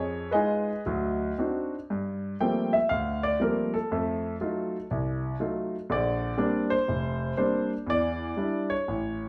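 Smoky and moody, this short solo jazz piece for concert grand piano sits in G minor at 120 BPM in 4/4, with a swung eighth-note feel and a rubato, unhurried sense of time. The piano carries everything alone, up front and intimate, its deep bass reaching down to F1 while the upper lines climb as high as G5. Its natural tone carries audible action noise, so the mechanics of the instrument are part of the sound. The opening moves from Fm7b5 to D7b9, and at 1.9 seconds the playing settles into a solo passage over Gm11, F7b9, Bb69 and Em7. A wet stone-room reverb with a 1.0-second decay gives the performance a live, in-the-room presence, and the recording is cut from a longer piece.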